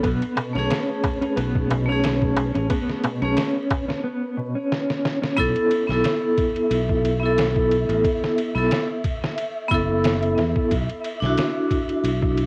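A cinematic, melancholic trip hop piece at 90 BPM opens with a ringing, metallic vibraphone struck with hard mallets, its fast motor vibrato, tremolo and tape echo sitting up front while a filter sweep runs over it through the first 5.4 seconds. Alongside it, a dark, clean electric guitar plays compressed fingered arpeggios with the same tremolo and tape echo, and a crisp metal-shell darbuka adds close, dry hand percussion until 4.0 seconds. Underneath, a bright, growly fingered bass carries transformer saturation, and a pitched-down sampler-style kit with a thumpy kick, medium-tuned snare and ride cymbal adds 12-bit grit and studio reverb to a lightly swung 4/4 groove. A drum fill leads into the second section at 5.4 seconds, where the guitar drops out and the harmony moves from Amaj7 to Esus4, later settling on Dadd9. Throughout, a grainy, flickering granular texture hangs in the background, and the whole home cassette recording is wrapped in light reverb and vinyl crackle, ending as a cut from a longer piece.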